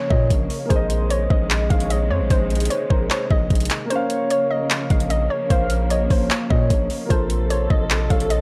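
A knocking trap kit with metallic hats and handclaps sits up front beside a punchy, heavy 808 bass, both arriving at 0.1 seconds, with the kick dropping out between 3.9 and 4.7 seconds in this dark, menacing half-time trap cut at 150 BPM in Bb minor. A hollow, bouncy square-wave pluck carries the melody with chorus, shadowed in the background by a velvety, wave-folded synth lead treated with chorus and analog delay. Underneath, a boxy grand piano accompanies while a distant, woody string section holds lush bowed chords over Bbm, Ab/Bb and F/Bb, all wrapped in gritty cassette-tape character and digital ambience.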